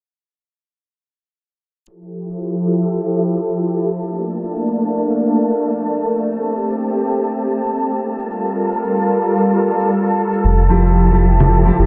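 Background cabasa and congas set a swung 112 BPM groove from 1.9 s in this smooth, blissful sunset chillout excerpt in F major, where an up-front string machine holds silky, vintage chords through Fmaj9, Bbmaj7, Am7 and Gm9, an airy, breathy wind-like noise texture hovers high above, a round, deep analog bass arrives up front at 10.4 s, and a fingerpicked nylon-string guitar with tape echo joins at 10.7 s, all within a dreamy, low-pass-filtered mix soaked in huge ambient reverb under a filter sweep.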